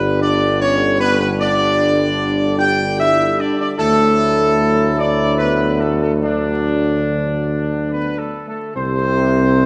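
In an unhurried 3/4 at 73 BPM with uneven beats, this triumphant, regal ceremonial fanfare in D major is a short cut from a longer classical piece, tuned to A4 = 442 Hz. Up front, a clear trumpet section carries the melody with a soft attack, sounding distant and roomy. Beneath it, a dark trombone section and a mellow French horn section with light vibrato hold tight sustained chords, the horns set in the background. A punchy solo tuba with light vibrato anchors the bass up front, and all four parts play throughout. The harmony moves from G5 to Dadd9 at 3.8 seconds and settles on D at 6.2 seconds before dropping away at 8.8 seconds. A wet concert hall reverb surrounds the brass, and the whole sound carries the worn warble and pitch drift of old cassette tape along with vinyl crackle.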